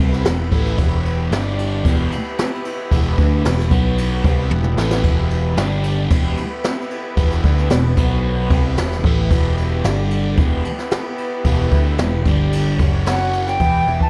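A thick, double-tracked fuzz guitar riff with distortion and phaser opens this dark, trippy psychedelic rock excerpt in E minor at 112 BPM, over round, foam-muted bass, a brushed kit with a boomy kick, high-tuned snare and a fill at 4.5 seconds, and distant, earthy bowed chamber strings holding sustained chords, before an airy concert flute with vibrato and tape echo enters at 13.1 seconds in a small, lightly reverberant room.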